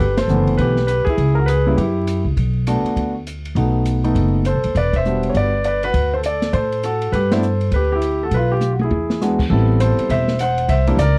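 A dry, close 1970s-style studio sound with vinyl crackle frames this relaxed, sophisticated jazz piano trio, swinging briskly at 202 BPM in G major in a short cut from a longer piece. A polished, present grand piano carries the melody up front over a woody, thumpy pizzicato upright bass, while a small-room acoustic kit with dark cymbals, a medium-tuned snare and a punchy kick sits further back. The band hits shared accents, including one at 4.9 seconds, the drums play a fill around 8.6 seconds, and the harmony moves through rich chords such as Em9, D7 and G7/B before a new section opens on Am9 at 9.5 seconds.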